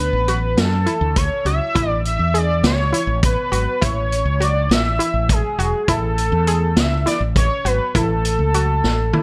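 Bright and driving, this short cut from a longer progressive instrumental moves in 7/8 at 203 BPM in eighths, in A major tuned to A4 = 445 Hz, cycling through Dmaj7, Amaj7 and F#m7/A under light reverb. A bold, retro octave-doubled lead carries the melody up front, its detuned sawtooth tone edged with ring modulation and vibrato and dressed in chorus, plate reverb and digital delay. A nasal, detuned analog pluck with chorus spins arpeggios beneath it, a dark, round fretless bass anchors the low end, and a punchy vintage drum kit with a rolled-off top enters at 0.3 s before a drum fill at 8.8 s.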